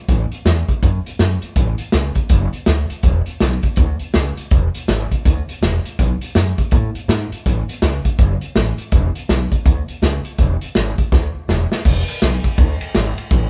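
Upright bass and a vintage drum kit start together in this rollicking, upbeat rockabilly piece at 163 BPM in E mixolydian with a swung feel. The woody, thumpy pizzicato gut-string bass sits up front beside punchy kick, medium-tuned snare, hi-hat, and dark ride and crash cymbals. The kit carries a small, pumping room sound with a rolled-off top, and the band plays live in one room with little reverb, until a drum fill at 11.1 seconds leads into a new section at 11.9 seconds.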